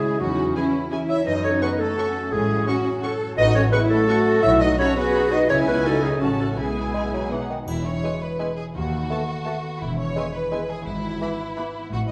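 A wet recital-hall sound frames this playful, whimsical film cue at 170 BPM in 3/4, cut from a longer piece and settling into E major: a soft-attack violin section carries the high melody over clear, distant violins, a dark clarinet and a hollow flute group on second lines, mellow French horns holding chords, ringing harp arpeggios, a smooth viola accompaniment, and a lush cello and bright double bass foundation, with a punchy bassoon joining at 6.9 s and a brief triangle at 7.7 s adding to the mischievous, magical air.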